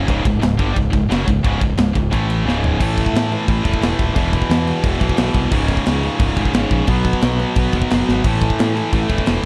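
Epic and relentless, this heavy metal cut in C# minor charges along at 176 BPM in straight 4/4. Three picked, distorted electric guitars play the riff from the start, one high-gain, another double-tracked and compressed in the background, over power chords moving between C#5, A5, E5 and B5. A growling, overdriven fingered bass and a tight, up-front drum kit with bright cymbals and an airy big-room sound drive it forward, with a drum fill at 2.5 seconds leading into a new section in a dark, dry mix.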